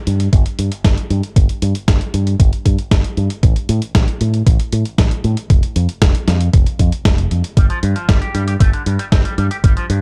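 A fingered electric bass with an envelope filter anchors this italo disco excerpt, its bright, up-front tone thickened by tube saturation as it moves between F1 and A2. Beneath it, a thumpy electronic kick with a tape-touched, small-room character sits prominently in the mix from 0.3 seconds, while a gritty, compressed sampler-style kit supplies hi-hat and a medium-tuned snare at a lower level. The groove is straight and steady in four, carrying a nostalgic, melodramatic mood. At 7.6 seconds a clean, twangy electric guitar, also run through an envelope filter and treated with delay, enters softly with picked arpeggios over a G5 chord. The production is dark and dry, with little reverb, keeping the parts close and direct.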